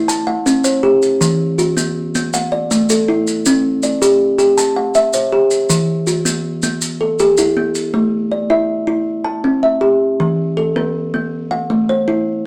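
Warm and hypnotic, this short cut from a longer piece follows a southern African traditional style built on an mbira-style interlocking cycle in a straight 12/8. A kalimba carries the piece in arpeggios, its thumbnail-plucked notes short, woody and dark, with the solid body of a board instrument and a smooth, up-front presence. Maracas add a grainy, mellow shake from 0.1 seconds, their acoustic small-room sound sitting well behind the kalimba. At 7.9 seconds the music moves into a second section and the maracas drop out, leaving the kalimba alone to the end. A wet studio reverb gives the recording a gentle sense of space.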